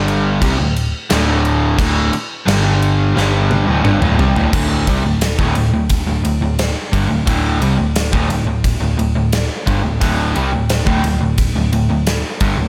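A gated drum kit sits up front in this menacing hard rock clip, its punchy kick, medium-tuned snare and bright cymbals ringing in a polished stone room, with crash, ride and toms all in the mix. It drives a straight 4/4 groove at 88 BPM, and a drum fill from 3.2 to 4.5 seconds carries the music out of its opening passage into a second section. Two overdriven, picked electric guitars share the aggressive riff from start to finish: one a cranked stack with a bright edge and a touch of spring reverb, the other crunchier and warmer. Beneath them, a hollow-body short-scale bass adds a dark, round, amped low end. The power-chord movement stays on D5 and G5, and light reverb gives the whole take a sense of space. The clip is cut from a longer piece.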